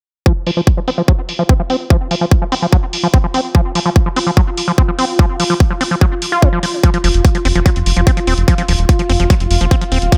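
A punchy, overdriven kick drives this intense psychedelic trance excerpt at 146 BPM in 4/4, joined by softly filtered hats that sound re-recorded in a large room, while a squelchy, gritty acid bass riff with resonant filter sweeps and delay pumps beneath a bright, detuned gated texture holding sustained chords with chorus and its own reverb, and a round, deep analog bass enters at 7.0 seconds in an otherwise dry mix centred on the F5 chord.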